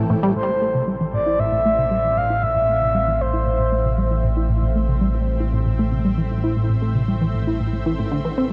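Cosmic and mysterious, this ambient excerpt in straight 4/4 rests on a lush, detuned unison pad that fades in under sustained chords, while a tight, nasal sequenced synth drives a riff with chorus, delay and a filter sweep, and a fat analog bass holds a low A up front. A bubbling, resonant texture of random filter steps sits in the background from 0.1 seconds, and a breathy, flute-like lead with vibrato carries a soft melody from 0.4 to 4.2 seconds. The dark production is bathed in a huge ambient reverb with an 8.5-second decay.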